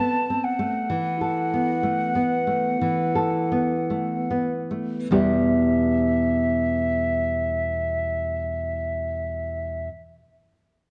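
This romantic duo for flute and classical guitar, cut from a longer piece, is solemn and yearning, moving in a rubato 4/4 at 46-67 BPM in E minor and slowing down through its first 5.1 seconds over A minor and B5/E harmony before settling on E minor as a new section begins. The silver concert flute carries the melody in an airy, straight tone with a crisp attack, while the fingerpicked nylon-string guitar supplies dark, classical accompaniment, its finger squeak audible. Both play throughout in a moderate recital hall reverb, with a dark, warm production.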